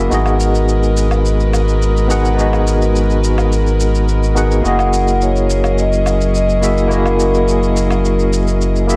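A barky, lightly overdriven tine electric piano with fast tremolo and digital delay carries the chords in this relaxed, wistful sunset chillout excerpt, over earthy, bowed chamber strings with a smooth top, a deep, round sub bass sitting up front and a gritty, compressed shaker and woodblock, while a mellow vibraphone with soft mallets enters at 4.7 seconds with a ringing, metallic melody, all set in a dark production with moderate plate reverb.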